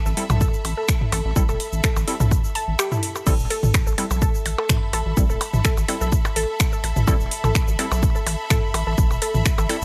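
A punchy, up-front electronic kick drives this quirky, clinical minimal techno cut in A minor at 126 BPM with a light swing, alongside a rubbery square bass, a squelchy resonant blip pluck with chorus and digital delay, crisp detuned wavetable chord stabs through phaser and delay, a booming analog drum machine with metallic hats, cabasa, crash and finger snaps, electronic toms and percussion blips, and a lush, close bowed string section, with the bass, pluck and strings pumping against the kick in a digital ambience as the drop arrives at 3.3 seconds.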